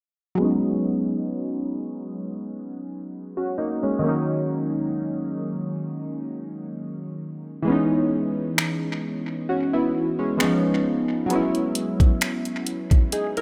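A lightly swung sixteenth-note feel in 4/4 underpins this late-night, moody contemporary R&B excerpt, with round, detuned analog keys carrying the chords from the start, their pulse and sawtooth tones shaped by chorus, phaser and a filter sweep. At 8.6 s a smooth, produced electronic kit enters up front, pairing a knocking kick with finger snaps and warm hi-hat touched by tape echo. The harmony drifts from B69 through D#m7 and C#m9 to C#9 and F#9sus4, all bathed in a moderate echo-chamber reverb.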